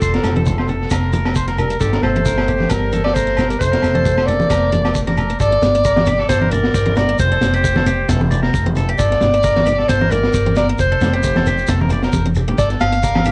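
A swung 4/4 groove at 134 BPM drives this highlife guitar band passage in G minor, cut from a longer piece, with a bittersweet, warm mood. The crunchy breakbeat kit sounds saturated and gritty with a high-tuned snare and tight kick, and it plays a short fill at 12.2 seconds, while low-tuned congas, a grainy shekere and ringing agogo bells in the background fill out the percussion. A woody pizzicato upright bass holds the low end, and an electric guitar at the edge of break-up picks twangy arpeggios. Further back sits a boxy, picked swing-style acoustic guitar, with finger squeak audible. Up front, a forceful clarinet carries the melody with vibrato and jazz phrasing, joined until 5.2 seconds by a breathy, mellow trombone second line, both touched by analog delay. Light reverb and a cassette-tape character give the home recording a band-limited, rolled-off top as the harmony moves between F and G minor colours.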